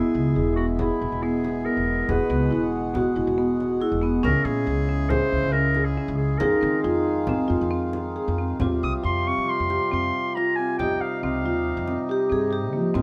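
A clear, classical-style clarinet leads this pensive, urgent piece of contemporary chamber music in 5/4 at 138 BPM. It is joined from the start by a ringing vibraphone with slow motor vibrato, a reedy, breathing pedal harmonium holding dark chords and round soft-mallet marimba arpeggios, with a pizzicato upright bass up front and a deep frame drum in the background. The harmony moves from E through Dbm and Fm7 before settling on Fsus2 at 8.6 seconds, and the clarinet drops out at 12.1 seconds while the rest carry on in light reverb.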